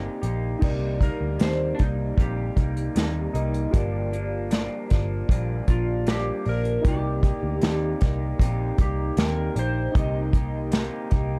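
This lonely, wistful bedroom-pop fragment opens on a slightly broken-up electric guitar through a small old amp with lush chorus and warbly pitch drift. Alongside it sit detuned, nostalgic lo-fi synth keys with a cassette-tape wobble, and a round, foam-muted picked bass sits up front. An airy acoustic kit played with bundle sticks enters at 0.2 seconds with dark cymbals and a tight kick, and at 1.0 seconds a clean lap steel takes the melody as a slide solo, played with fingerpicks and volume swells and bathed in chorus and tape echo, over a dark, warm mix with light reverb as the chords move from Cm7 to Gm7 and back.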